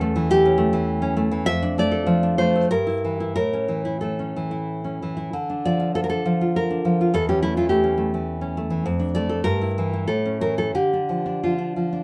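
A full-bodied, fingerpicked nylon-string guitar sits up front in light reverb, playing this passionate, melancholic romantic piece alone in a rubato 3/4 across a span from E2 to E5, its minor-key harmony circling back on itself through the 12 seconds of this fragment cut from a longer work.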